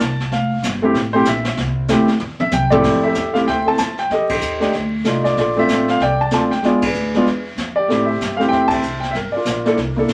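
An up-front concert grand piano leads this relaxed, sophisticated jazz piano trio excerpt, its warm, intimate tone showing deep bass, long sustain and audible action noise as it carries the melody in F major. The tempo is a brisk 190 BPM in 4/4 with a light swing on the eighth notes, and the harmony moves through rich chords such as Fmaj9, F13, Bbmaj7, E7b9, Am7 and Gm7. Beneath it, a pizzicato upright bass with gut strings gives a woody, thumpy low end. A distant, roomy brush kit with dark cymbals, a medium-tuned snare and a boomy kick sits further back, playing a fill at 2.2 seconds that leads into the next section. The trio hits shared accents at 4.3 and 6.8 seconds, and the whole take carries a small-room ambience and a layer of vinyl crackle that give it a vintage, lived-in feel.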